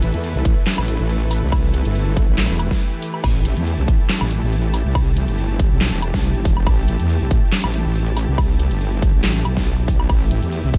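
Aggressive and chaotic, this heavy wobble dubstep excerpt in A minor moves at 140 BPM with a swung half-time feel, as an up-front, saturated wobble bass with chorus and overdrive growls beneath a lush, detuned supersaw pad that pumps with sidechain, while an overdriven dubstep kit of deep snare, handclaps, hi-hat, ride, crash and woodblock is joined by a punchy electronic kick entering at 0.5 seconds, all in a dark, dry production with a brief break at 2.8 seconds.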